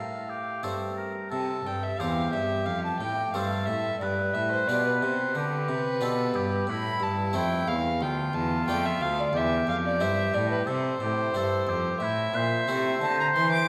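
Radiant and flowing, this classical excerpt from a baroque-style sonata movement sets an up-front, dark gut-string violin melody over a distant, warm oboe second line, a close-miked, bright Flemish-style harpsichord accompaniment and a rich, nasal cello bass with light vibrato, all four playing together throughout in a wet concert hall.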